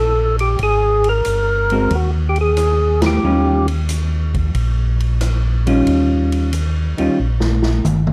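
Swung eighths in 4/4 drive this greasy, soulful soul jazz organ trio fragment, opening on a rootless Eb chord and moving through Absus2 to Eb9. A fat, lightly overdriven tonewheel organ with percussive third-harmonic attack, slow rotary speaker and plate reverb carries the melody until 3.7 seconds, over a mellow, round organ bass line with chorus vibrato. A punchy, natural big-band drum kit in a big room adds a band accent with the others and closes on a fill from 7.2 seconds, while a dark, clean, picked hollow-body electric guitar comps up front in a dusky production with light reverb.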